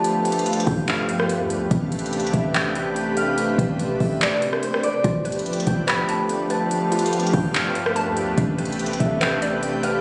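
Captured on a phone in a club-like room, this compressed, dull-topped clip of hazy, ethereal cloud-rap moves at 144 BPM in a half-time feel, drifting between G9 and Am11 chords. A vintage, detuned sawtooth pad with chorus and sidechain pumping sits up front beside a smooth R&B kit of soft kick, handclaps, hi-hat and rim click, while a boomy 808 bass rumbles beneath and a thumb-plucked concert harp rings out a delayed melody over a reversed, granular swelling texture. The kick drops out from 4.2 to 5.0 seconds, and at 5.0 seconds a hollow, bouncy square-wave pluck adds chorused, delayed arpeggios in the background.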